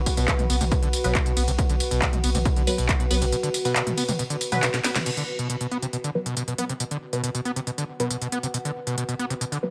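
Dark and industrial, this driving peak-time techno cut runs at 138 BPM in B minor. It opens on a drop: a punchy, tape-warmed electronic kick and a thick, saturated sub bass with overdrive and sidechain pumping stop around 3 seconds, while an up-front techno drum kit (cracking snare, smooth hats, handclaps, tambourine, toms, ride and crash) carries on through a fill into a band accent at 5.0 seconds. Over this, a screaming, squelchy sawtooth acid line with resonant filter sweeps, distortion, cassette-tape colour and delay sits up front, while muted, detuned dub chord stabs with phaser and lush chorus stay in the background, a deep, moody ambient pad with slow attack and its own reverb hangs throughout, and the mix sits in a moderate stone room ambience.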